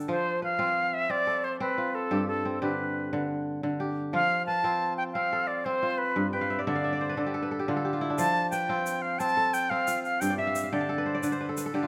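Heard through a moderate recital hall reverb, this hypnotic, joyful passage of West African string and xylophone music moves at 118 BPM in 12/8 in F lydian, with a crisp, ringing, fingerpicked kora spinning up-front arpeggios and a fill starting at 6.3 seconds, a pure, reedy silver concert flute carrying the melody with vibrato and a soft attack, and a grainy tube shaker that sounds at the very start and then returns at 8.2 seconds.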